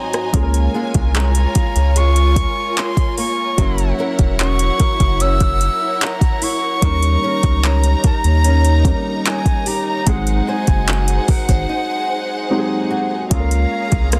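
A smooth, straight 74 BPM 4/4 pulse from an up-front, overdriven R&B kit of soft kick, metallic hi-hat, handclaps and rim click, joined at 0.3 s by a deep, round, dark analog bass, carries this romantic contemporary R&B piece in Db major, where an airy, reedy concert flute with tape echo sings the melody over a mellow felt-muted upright piano, distant lush bowed strings with sidechain pumping, and a woody fingerpicked flamenco guitar arpeggiating in the background, also with tape echo, through a small room and a dense modern master, with a break from 11.7 to 13.3 s in this excerpt.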